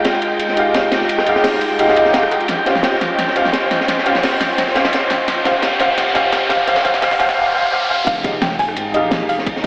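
Soulful and dreamy, this liquid drum and bass passage at 172 BPM in F minor is cut from a longer piece and spends most of its length building toward a drop at 8.1 seconds. Dark, woody strings hold sustained chords moving from Fm9 to Eb13 and back, pumping under sidechain, while a dark, mellow baby grand piano with audible action noise enters at 0.5 seconds and sits up front, dressed in lush chorus and tape echo. Two drum kits run from the start: a crunchy, gritty breakbeat kit with dark cymbals and a high-tuned snare, filtered and rolled off at the top, and an overdriven pop kit with a fat snare, metallic hats, rim clicks and crash, with a drum fill between 2.5 and 7.4 seconds as a very quiet electronic riser climbs underneath. At the drop, a punchy, overdriven electronic kick, a deep, rumbling detuned saw bass and a soft, round pluck melody with chorus, cassette tape colour and analog delay all arrive together. 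The whole mix is soaked in a long church reverb and squeezed through a thin AM radio tone, giving it a hazy, faraway glow.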